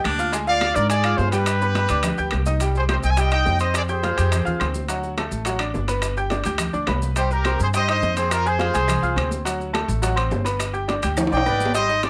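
A punchy, tight trumpet section leads this passionate, danceable salsa excerpt from up front. Its smooth-topped, pop-style lines carry light vibrato and a cassette-tape tint, playing in bursts that return at 7.2 s and again at 11.3 s. Beneath it, an upright piano keeps the accompaniment going throughout, brilliant and intimate, with audible action noise, a slightly detuned edge and the same cassette coloring. An up-front pizzicato upright bass on gut strings gives a dark, thumpy foundation. The percussion fills out the groove with ringing metal-shell timbales, high-tuned, band-limited congas in the background, very quiet round, low-tuned bongos played with soft hands, woody claves, and grainy, mellow maracas. A drum fill arrives at 11.2 s in this straight 4/4 cut, which has the light reverb and homespun character of a home cassette recording.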